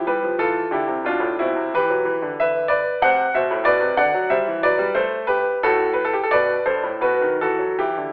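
A bright, up-front concert grand piano with deep bass and short sustain plays solo through this flowing, introspective classical fragment of a baroque-style suite movement in 3/4 at a rubato 77-94 BPM, tuned to A4 = 441 Hz, moving from E minor through C, G/B, A minor and Gadd9 to a B7 at 7.0 seconds, all set in a wet recital hall reverb and heard through a telephone sound.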